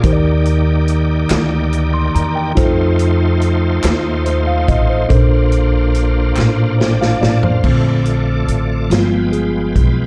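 A dark, warm small-room sound with light reverb frames this short excerpt of slow, uplifting and reverent gospel in 6/8 at 47 BPM, moving from Ebmaj7 through F7 to Bbmaj9 in Bb major. A mellow, up-front tine electric piano carries the accompaniment over woody pizzicato upright bass, while a bright tonewheel organ holds shouting, lightly overdriven chords through slow rotary speaker and chorus vibrato. A distant, roomy big-band drum kit with a punchy kick plays beneath with a straight feel, joined by crisp group handclaps from 1.3 to 6.8 seconds. A drum fill at 6.4 seconds leads into an electric piano solo from 7.6 seconds, landing on a G7b9 chord.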